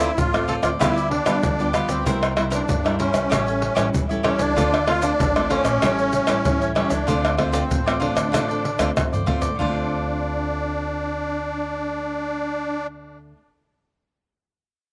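A straight 4/4 samba-and-choro groove at 96 BPM in D minor, cut from a longer piece, sets a bittersweet, nostalgic mood as an up-front, reedy, shimmering musette accordion carries the melody with slapback echo over crisp picked cavaquinho, fingerpicked classical nylon-string guitar with audible finger squeak, and a woody, growly pizzicato upright bass, while tube shaker, pandeiro, tight surdo and tamborim, played with hard hands, give a vintage, band-limited pulse that ends with a drum fill and drops out at 9.7 s, leaving the strings and accordion in a dry outdoor sound.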